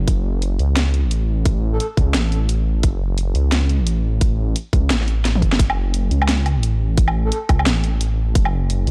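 A dark, heavy production with a cinematic feel opens this short excerpt of half-time drum and bass at 174 BPM in F# minor, where a deep, rumbling detuned saw bass sits up front from the start beneath a tight electronic kick and a produced kit with a cracking snare, hi-hat, toms and woodblock in a small room. A drum fill arrives at 5.2 seconds, and a soft, breathy flute-like synth lead with subtle chorus and digital delay surfaces only in brief touches on A4, at 1.7 and 7.2 seconds.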